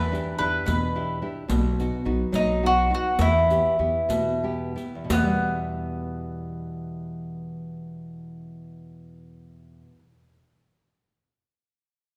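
A picked mandolin opens this Italian folk serenade, its doubled strings giving the melody a mellow, round voice that sits up front, with a fingerpicked classical nylon-string guitar and a pizzicato upright bass sounding beneath it from the first moment. The guitar's accompaniment is warm and close, while the gut-string bass adds a woody, thumpy low end. A riq joins at 0.1 seconds with dark jingles struck by hard hands, heard in a small-room setting, and it stops at 5.5 seconds. The music moves in a straight 6/8 over a passionate, romantic progression from Em7 to B and back to Em, easing into a slowdown between 1.5 and 5.1 seconds before a second section begins. A moderate scoring-stage reverb surrounds the performance, and the brief fragment is cut from a longer piece.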